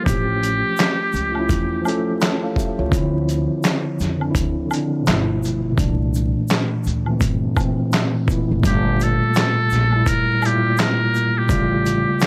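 A buzzy, metal-muted trumpet with scooped notes and vibrato sings a jazz-style melody at the start and returns from 8.7 seconds in this nostalgic, melancholic lo-fi hip hop excerpt at 84 BPM with a swung 16th-note feel in G dorian, where a mellow tine electric piano carries the Dm9, G13 and Gm9 changes over a woody pizzicato upright bass, a gritty, overdriven sampler-style drum kit with a thumpy kick, handclaps and hi-hat, and a close, dry egg shaker and woodblock tucked in the background, all steeped in vinyl crackle and light reverb.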